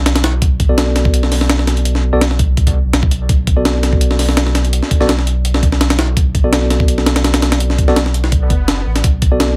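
Drum and bass with a jungle edge, this dark, atmospheric clip from a longer piece pairs a gritty, pitched-up breakbeat kit (thumpy kick, medium-tuned snare and hi-hat, tape-warm and up front) with a deep, round dub sub bass, while mellow tine electric piano stabs with dub echo drift over a Bm7 chord from 0.7 seconds and a brief electronic swell enters at 8.4 seconds in a dry mix.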